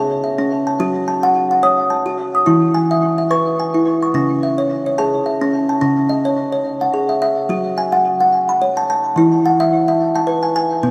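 Meditative and gentle, this short fragment of world meditative music sways in an unhurried three-beat metre with a slight swing. A solo kalimba carries the whole piece, its woody, hollow-box tone shaped by soft fingertip plucks that leave each note ringing and airy. The instrument sits up front while covering a broad span from low to high registers, and a diffuse ambient delay trails behind its notes. A deep, cathedral-like reverb with a long tail bathes the recording in a spacious, reflective atmosphere. The harmony moves through C# minor, F# minor and E, and a second section begins at 5.8 seconds, passing through F# minor and E until the fragment ends at 10.9 seconds.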